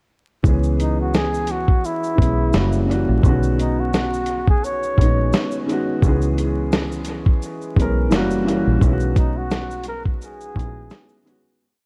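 Dreamy and mellow, this short lo-fi hip hop piece drifts along at 86 BPM in B major with a gentle sixteenth-note swing, cycling through C#m7, F#7b9 and B69 before a fade-out that begins at 8.8 seconds. A dusty soul sampler-style drum kit sits up front with a gritty, compressed sound, a thumpy kick, a medium-tuned snare, hi-hat and a soft beat carried by shaker sixteenths. Underneath, a deep dub fingered electric bass plays a sparse, round, foam-muted line with slides and chromatic approach notes. A woody upright piano, also up front, pushes its drop2 chords with grace notes, repeated like a sampled loop and softened by a low-pass filter and dub echo. Entering at 0.8 seconds, a breathy flugelhorn offers an intimate, whispered jazz solo built on motif-based call phrases, with vibrato and a soft attack, sent through the same filter and echo. The whole piece sits in an echo-heavy digital ambience flecked with vinyl crackle.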